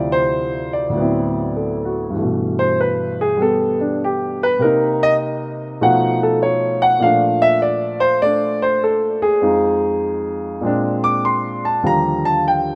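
A solo grand piano opens on a Dm9 chord, setting a smoky, cool jazz mood at 99 BPM in 4/4 with swung eighths. The piano sounds warm, natural and up front across a range from D2 to D6, and its solo runs from 2.2 s to the end of this 12.8-second cut from a longer piece, moving through rich chords such as G69, B7#11 and Ebmaj9. A moderate, lush hall reverb surrounds the instrument in a rough home demo mix.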